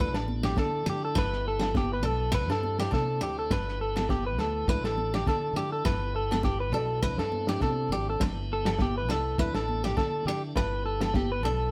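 Danceable and warm, this highlife guitar band groove has a lightly swung feel, with a slightly broken-up, compressed electric guitar playing arpeggios up front over bright, full-bodied picked steel-string acoustic guitar and a round, fingered electric bass. A piping, scooped tonewheel organ holds sustained chords through a slow rotary speaker, while a dry, muffled soul drum kit with a tight kick and rolled-off top anchors the beat, and ringing agogo bells and hard-hand, high-tuned congas sit in the background. The band plays live together in a moderate stone room, cycling through Dsus2, G6 and Cadd9 in a passage cut from a longer piece.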